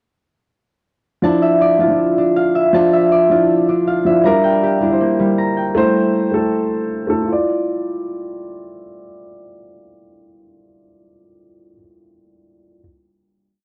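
This is a menacing, dark trap and hip hop piece in D minor at 159 BPM, felt in half-time. A concert harp and a dark concert grand piano both enter at 1.2 seconds, each repeating like a sampled loop. The thumb-plucked, ringing harp plays falling eighth-note arpeggios with tape echo until 8.2 seconds. The mellow, boxy piano sounds intimate, with audible action noise and deep bass as it plays rhythmic chords in spread voicings through Dmadd9, Gm and Am before returning to Dmadd9. The piano then moves into the final chord section at 7.3 seconds and carries on alone once the harp drops out, until 12.8 seconds. Both parts sit up front with a cassette-tape grain, in a small room with a home-recorded, low-pass filtered sound.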